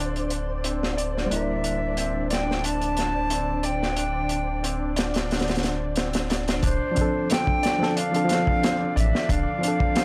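A crunchy, saturated breakbeat drum kit with a punchy kick sits up front in this dark, hypnotic trip hop excerpt from 0.2 seconds, over a deep, round dub sub bass, a reedy, worn electric piano with harmonic tremolo and tape echo, background string-machine cellos with ensemble chorus, a muted felt upright piano playing arpeggios through analog delay, and a flickering grainy texture that ends at 6.6 seconds, while an airy wooden flute carries the melody with dub echo from 1.3 seconds in a small, gritty room.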